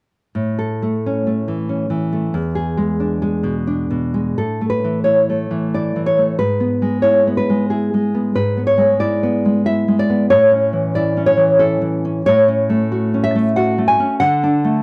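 A thumb-plucked nylon-string guitar, up front and close in a dry 1970s-style studio sound, plays this nostalgic, tender romantic solo excerpt in A major at 91 BPM in a rubato 3/4, moving from A and E7 into a second section at 4.4 seconds that passes through E/G#, F#m/A and D across its range from E2 to G#5.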